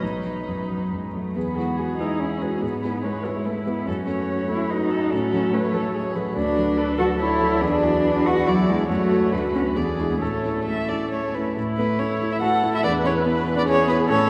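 All four players begin together: a muted violin carries the melody over a muted cello's second line, while a dark grand piano and a muted viola supply the accompaniment in this quick, spirited classical-period movement for piano quartet. The tempo sits between 131 and 147 BPM in 3/4, with a rubato feel and a cheerful mood, moving from E major into A major at 6.4 seconds. The three strings play con sordino with vibrato, giving each a veiled, shadowy tone; the viola sounds distant with a soft attack and portamento, and the cello has a smooth top. The piano is mellow and intimate, placed up front with a vintage character and audible action noise. A long cathedral reverb surrounds the ensemble, recorded in a church or concert hall, and the passage returns to its opening material at 11.6 seconds before this excerpt, cut from a longer piece, ends at 14.3 seconds.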